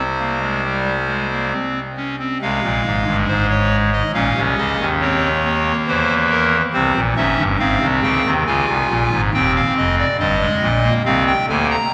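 Driving and solemn, this short cut from a longer baroque-style three-part fugue in F minor moves at 69 BPM in a straight 4/4 for pipe organ alone, played on a hollow clarinet reed stop with baroque voicing, a touch of chiff and an up-front presence across a range from Eb1 to Bb5. Opening on a bare C before settling into F minor at 2.4 seconds, the harmony passes through Bbm add11, C7 over E, F minor over Ab and C minor over Eb, reaching a half-diminished D chord over C near 11.1 seconds. A long, wet cathedral reverb surrounds the organ, and nothing in the sound rises above about 10.8 kHz.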